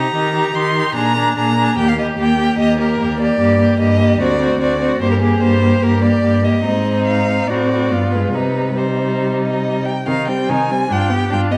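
Cheerful and spirited, this quick classical-period string quartet movement in C minor runs at 146 BPM with a flexible, rubato feel, drifting from Eb major through G minor to settle on C minor by 8.3 seconds. A close, soft-attacked first violin carries the melody with vibrato and expressive portamento, while a more distant second violin adds a rich second line, the viola supplies focused, smooth-topped accompaniment, and the cello anchors the bass with its own sliding, expressive vibrato. A wet recital-hall reverb and a layer of vinyl crackle frame this short fragment, cut from a longer piece.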